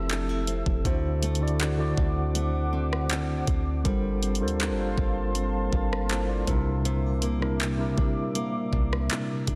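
Dreamy and tender, this short contemporary R&B excerpt moves at an unhurried 80 BPM in 4/4 with a straight feel, drifting through Fmaj7, D7, Gm11 and C9. A mellow, clean tine electric piano sits up front with the accompaniment, its tone colored as if heard through its built-in speakers. Underneath, a deep, boomy 808-style bass with a sine core, a noise layer and a fast, decaying attack anchors the low end. A fingerpicked nylon-string guitar plays full-bodied arpeggios touched with delay, while a dark, moody ambient pad of detuned unison sawtooth and sub-octave sine holds slow-attack chords, warbling with chorus and its own reverb. The smooth, produced drum kit enters at 0.1 seconds, up front and tape-warm with a knocking kick, warm hi-hat, handclaps and rim click. The mix carries light reverb and a dense, heavily limited modern master.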